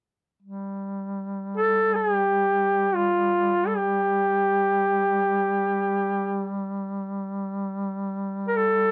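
A dry, close recording in a 1970s studio style, touched with light reverb, frames this short passage of Caucasian folk lament, longing and solemn in mood. A mellow duduk enters at 0.4 seconds, holding a low G3 drone with a soft attack, vibrato and scooped notes. At 1.6 seconds a warm, vintage-toned duduk takes the melody up front, singing between F4 and Bb4 with its own vibrato and scooped notes.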